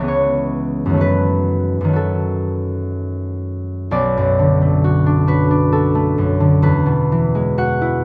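A solo concert harp opens this mysterious, wistful classical fragment, its fingerpicked strings ringing up front over C#m7 and F#m6 in F# dorian, with a rubato 3/4 pulse drifting between 57 and 68 BPM. At 3.9 seconds the music shifts into B dorian, moving through Bm7 to Eadd9, and across the piece the harp spans from deep B1 up to F#5. A moderate recital hall reverb lends the acoustic tone a gentle halo, and the passage is cut from a longer piece.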